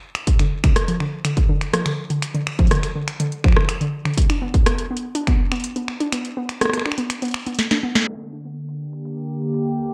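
A booming analog drum machine opens this melancholic, eerie IDM fragment with crisp, up-front snare, metallic hats, rim clicks and finger snaps under gated reverb and digital delay, soon joined by a heavy electronic kick and a warbly, dusty square-and-sawtooth pluck playing mellow arpeggios drenched in chorus and delay. The kick falls away at 5.4 seconds, and after a drum fill and a band accent the drums take on a filter sweep as a nostalgic, detuned tape-like pad rises at 8.3 seconds with slow-blooming sustained chords colored by chorus and phaser. The bright 1980s-style digital production carries a light reverb and a low-pass filter.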